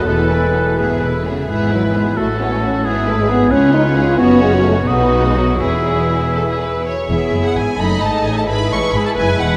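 Spirited and cheerful, this brief cut from a quick classical-period orchestral movement in 6/8 moves with an elastic rubato, as a focused violin section carries the melody over a smooth, distant second violin line. A solo oboe and a mellow, present clarinet add second lines until 6.8 seconds, while a clear viola section fills in the accompaniment and a tight French horn section, the most prominent part, holds sustained chords. Beneath them, a rich double bass section and an expressive cello section share the bass, all soaked in the long, echoing reverb of a vast cathedral.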